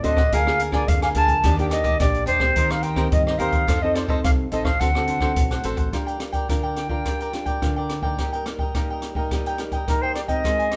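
Samba and choro at 107 BPM in a yearning, nostalgic mood, led by a silver concert flute with a pure tone and expressive vibrato, over crisp picked cavaquinho, a dark fingerpicked classical nylon-string guitar, and an up-front jazz kit of hi-hat, rim click and boomy kick, while a woody pizzicato upright bass thumps in the background until 5.9 s, when the music settles into G phrygian, all set in a moderate studio reverb.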